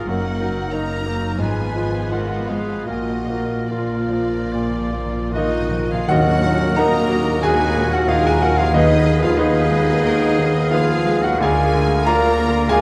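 A wet concert-hall reverb surrounds this passionate, tragic romantic movement for piano and orchestra, played with rubato in 4/4 and cut from a longer piece. Up front, a clear, vintage-toned grand piano carries the melody over a lush bowed violin section, while clarinet, close-miked oboe, an airy flute and a distant second violin section weave supporting lines; mellow bassoon, very quiet violas and warm French horn chords fill the middle above cello and double bass sections. Timpani on soft mallets play a fill from 2.9 s alongside a faint cymbal swell and tam-tam, and a very quiet tuba joins the bass at 6.1 s, where the band lands an accent.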